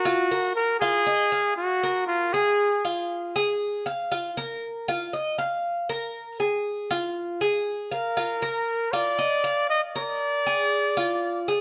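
Warm and nostalgic, this short Latin passage, cut from a longer piece, moves in a straight, even four-beat feel. A Cuban tres plays arpeggios from the start to 11.6 seconds, its picked double strings sounding bright and metallic, with some strings doubled at the octave. A breathy trumpet carries the melody up front in an intimate, pop-style solo, with a soft attack, light vibrato and scooped notes that give it a whispered quality. The trumpet sounds at the opening, falls silent after 2.8 seconds, and returns at 7.9 seconds, leaving the acoustic tres alone in between. Light reverb adds a gentle sense of space, while the harmony hovers on suspended and added-ninth colours before closing on a dominant seventh chord.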